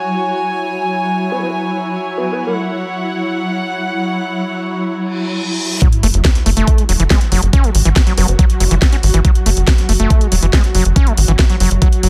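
Dense and heavily limited with little reverb, this psychedelic trance passage has a hypnotic pull from the first moment. It opens on a swarming, tense granular drone of detuned sine voices holding sustained chords in its own reverb, beneath an up-front chamber string section whose reedy gut-string tone and light vibrato give the texture a period flavour, both pumping against the sidechain. A nasal, dark wobble bass with a vowel-like formant sweep surfaces briefly as a second line from 1.3 seconds, treated with subtle chorus, a high-pass filter and delay. A reverse cymbal and sub drop from 5.1 seconds lead into the drop at 5.8 seconds, where an overdriven electronic kick knocks up front and a layered drum kit adds a cracking snare and bright, filtered hats with a small-room sound. Moments later, at 6.0 seconds, a punchy sequencer bass joins to drive the low end with saturated, wave-folded plucks. 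Over this, a squelchy, gritty acid bass carries the riff, resonant and distorted with dub echo.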